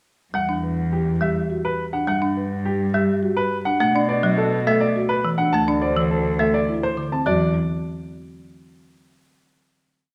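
A straight 3/4 pulse at 104 BPM drives this meditative, hypnotic minimalist classical piece in E minor, where an intimate, up-front grand piano repeats a short melodic cell with audible action noise over a dry, rustic hardwood marimba struck with hard mallets, a mellow padauk marimba adding round soft-mallet arpeggios from 0.6 s, and a single bowed cello holding long, expressive bass notes with vibrato and portamento, the ensemble set in a moderate recital-hall reverb before settling on a final chord at 7.3 s.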